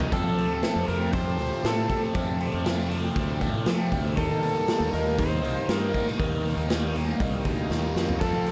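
Psychedelic rock with a hypnotic, trippy mood, this short cut from a longer piece moves in a straight 4/4 and shifts from an F chord to Eb at 4.2 seconds. A biting, double-tracked electric guitar sits up front with a picked riff, colored by phaser and tape echo. Beneath it, a fuzz-laden fingered bass with punchy overdrive holds down the low end. The raw garage drum kit, also up front, sounds saturated and gritty in a bright stone room with a pumping ambience, a rolled-off top and tape echo of its own, and it plays a fill at 7.7 seconds. An overdriven slide guitar enters at 0.1 seconds with a gleaming melody steeped in tape echo, while a very quiet tonewheel organ holds thick sustained chords with key click, chorus vibrato and a slow rotary speaker. Moderate spring reverb and an echo-heavy mix give the whole recording a deep, trailing atmosphere.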